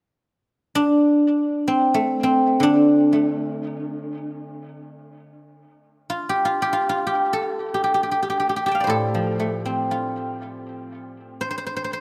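A bright, silvery guzheng played with fingerpicks rings out up front as the sole voice of this elegant, longing Chinese traditional excerpt in free time and the D yu mode, entering at 0.8 seconds and spanning A2 to A5 with a tape echo, captured by close, detailed microphones in light reverb.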